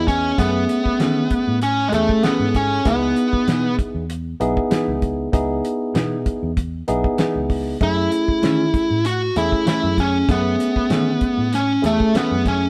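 Brooding and smoky, this short straight-eighth soul blues excerpt moves at 97 BPM in 4/4 with a light sixteenth-note swing. An overdriven lead guitar, picked and up front with a smooth, warm tone, carries the melody from the start, drops out at 3.8 seconds, and returns at 7.8 seconds. Underneath, a bright, barky tine electric piano played clean through a combo amp supplies the accompaniment across the whole clip, over harmony that moves from a rootless F#m9 to C#m9 and back to F#m9. A vintage fingered electric bass, foam-muted and round, holds the low end, while a damped 70s drum kit of hi-hat, kick and snare sounds dry and dark, with a fat snare, tight kick and rolled-off top. A mellow, compressed electric guitar adds clean, fingered stabs in the background, and the whole band plays live in one room with light reverb.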